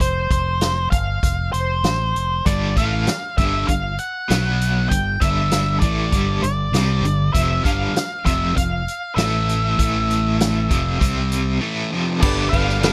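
A dry classic rock fragment at 98 BPM in G mixolydian moves with a driving, confident feel, as a dark, fuzzy octave lead guitar sits up front over fingered electric bass and a punchy vintage drum kit of kick, snare, hi-hat and crash, joined at 2.5 seconds by a bright, cranked stack guitar with tremolo and a sludgy overdriven guitar tucked in the background, while a very quiet tonewheel organ with slow rotary vibrato adds thick held chords from 11.9 seconds and a woody, slightly detuned upright piano slips in at 12.2 seconds.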